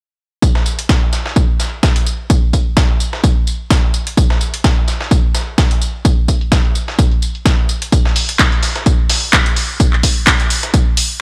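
A swung 4/4 house groove drives this short, soulful and energetic cut, built entirely from drums. A punchy, tape-warm electronic kick sits up front, joined by a house kit of handclaps and hi-hats with warm, low-pass filtered hats. Beneath them, a gritty, sampler-style soul kit adds hi-hat, a medium-tuned snare and tambourine, its filtered hats and percussion pumping inside a dry, hardware-rough mix with only a small room around the parts.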